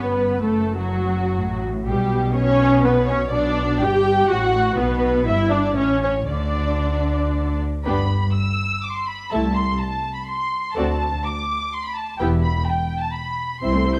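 The muted viola section sits up front with a lush, veiled tone, carrying the accompaniment of this quick, lively and graceful classical-period movement for string orchestra at 125 BPM in 3/4, played with a rubato feel. Above it, the violins carry the melody from F#4 to E6 with a dark, distant quality and soft attack, while a second violin line stays in the background with a smooth top. Cellos and double basses share the bass, the cellos bowed with vibrato and the basses with a lighter vibrato, and every section plays con sordino. The harmony moves through F#m, G and Em/G, with two brief chordless moments along the way, before settling into G major at 7.9 s, then passes through Am/C and D7 to Em. Moderate scoring-stage reverb and close, detailed microphones give the ensemble clarity in this passage cut from a longer piece.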